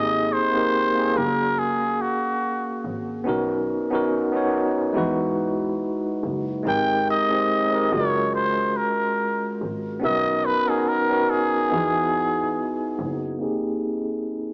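Worn, warbling cassette sound with pitch drift, a low-pass dullness and a small-speaker quality sits in a lightly reverberant small room, giving this nostalgic, dreamy lo-fi hip hop fragment its swung, hazy feel. A close-miked, cup-muted trumpet carries the jazz-style solo melody up front, raspy and growling with scooped notes, a soft attack and light vibrato, while a clean tine electric piano, also up front, supplies accompaniment on major-ninth chords. In the distance, a single bowed double bass played con sordino adds a dark, veiled bass line with vibrato until 13.4 seconds, when a filter sweep carries the electric piano alone to the end at 14.5 seconds.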